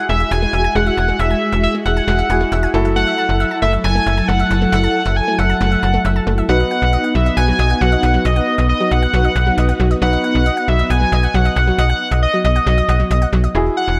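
Upbeat yet wistful pop at 136 BPM in a straight 4/4, this short section cut from a longer piece moves through Eadd9, F#m7 and B. Up front, a bold, retro octave-doubled lead carries the melody with a ring-modulated sawtooth edge, vibrato, chorus and delay. Beneath it, a slap-like FM bass enters at 0.1 seconds with snappy, metallic low notes. An analog pluck spins round, detuned arpeggios colored by a noise layer, filter sweep and moving notch, with its own chorus and delay. An ensemble organ-string holds vintage, organ-like chords through phaser and ensemble chorus, and both it and the pluck stop at 13.5 seconds. A clear concert grand piano sits in the background with open accompaniment, and the mix carries a light reverb and digital ambience.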